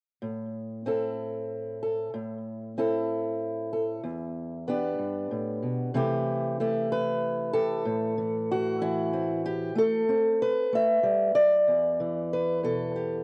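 A cassette home recording with moderate studio reverb frames this melancholic, wistful folk passage, cut from a longer piece: a solo fingerpicked acoustic archtop guitar, warm and up front, plays at 63 BPM in a straight 6/8, tuned to A4 = 445 Hz, moving through Am, Em7 and C6 before returning to Am at 7.9 seconds and settling on Em7 at 11.7 seconds.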